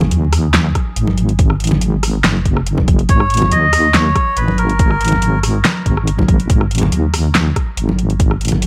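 Brooding and dark, this deep dubstep excerpt rides a swung half-time groove in which a sustained, sawtooth-edged wobble bass with chorus sits up front beside a tape-warm electronic kick and a layered drum kit of fat snare, metallic hi-hats, handclaps and rim clicks, while hard-handed acoustic congas stay in the background and a reedy, breathy melodica with dub echo appears from 3.1 to 5.4 seconds, all under light reverb, studio ambience and vinyl crackle.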